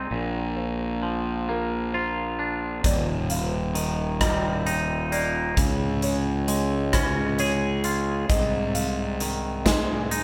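Soaring and cinematic, this post-rock excerpt moves slowly at 44 BPM in 6/8 with a straight feel in Eb major, as a twangy, clean electric guitar and a soft, felt-muted upright piano tucked in the background weave arpeggios over a growly, overdriven fuzz bass sitting up front. At 2.8 s a big acoustic rock kit joins with a punchy kick, medium-tuned snare, hi-hat and rim click, just as the harmony moves from Bb to Ebmaj7, then on to Dbmaj7 and Ab/C. The band plays live in one large studio room, and a moderate reverb lends the whole performance a spacious, open sound.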